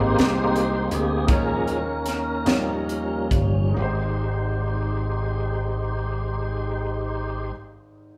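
A wet, roomy sound puts a live band together in one large studio, with a reverb tail around 0.9 s, in this jubilant, uplifting slow gospel clip in 6/8, cut from a longer piece. A full, lightly overdriven tonewheel organ sits up front through a fast rotary speaker and chorus vibrato, its key click audible as it takes a solo over sustained chords from the start to 3.8 s. That opening stretch also slows down as the harmony moves from Abmaj7 through Eb7sus4 and Eb7 before settling back on Abmaj7. Bright, punchy slap bass, direct and amped, anchors the low end, while a crisp fusion drum kit with a high-tuned snare, punchy kick, hi-hat and a gritty, saturated, pumping small-room character plays only from 0.2 to 3.5 s. Behind them, a woody upright piano with long sustain adds background accompaniment and carries on alone after the organ and bass stop at 7.5 s, ringing out until 8.2 s.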